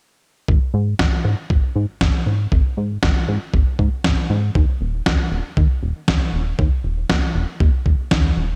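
A straight four-four pulse drives this short italo disco passage, with a thumpy electronic kick and a chorused synth bass arriving together at 0.5 seconds. From 1.0 seconds a medium-tuned electronic snare joins, its gated reverb giving each hit an abrupt tail. Both drums are sampler-style, compressed, gritty and tape-warm, re-recorded in a large room, and they sit up front. The retro, glossy synth bass blends pulse-wave and sawtooth tones with pulse-width modulation, detuning and a filter pluck, so its notes start fast, then sustain with a mellow, chorused sheen close at hand in the mix. The mood is bittersweet and melodramatic, framed by light reverb and bright 1980s-style digital production in a fragment cut from a longer piece.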